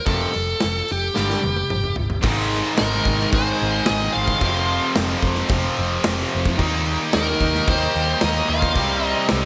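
A dark, smooth overdriven lead guitar carries the melody up front from the very start of this driving, menacing hard rock excerpt at 110 BPM, over two bright distorted rhythm guitars with slapback echo, one heavy and one tight, grinding out the riff in the background, a round, amped hollow-body picked bass, and a big acoustic rock kit with punchy kick and crashing cymbals that plays a fill just before 2.2 s, when a very quiet double-tracked high-gain guitar joins the riff and, at 2.8 s, a fuzzy octave lead guitar adds a second line behind the melody, the band set in a lush hall reverb with a big arena sound.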